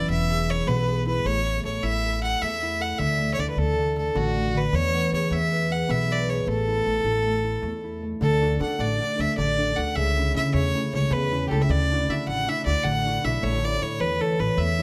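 Close, detailed microphones and a light reverb give this short cut from a longer Celtic folk piece an intimate, present sound. It is a lively, cheerful slip jig in 9/8 at 104 BPM in dotted quarters, with a straight feel. A single bowed fiddle carries the melody up front, its tone clear and focused with a light vibrato, ranging from F#4 to F#5. A concert harp, thumb-plucked and ringing with a mellow acoustic voice, supplies the accompaniment. A pizzicato upright bass on steel strings adds a woody, dark low end reaching down to E1. The music opens in A major, moving through E, A and D chords, then shifts to D major at 8.2 s, where the harmony passes through D, A/C# and Dadd9 before settling on A as the clip ends at 14.8 s.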